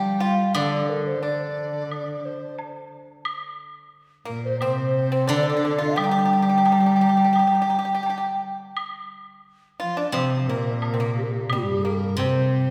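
Wistful and graceful, this rubato excerpt of Chinese traditional chamber music sets an airy, hollow xiao melody in the background beside a buzzing-membrane large dizi, while an up-front, woody cello with vibrato carries a dark second line, a dry, percussive pipa and a ringing, silvery steel-string zither played with fingerpicks fill out the texture, and a bright woodblock enters at 0.5 s, the ensemble heard from further back in a reverberant concert hall.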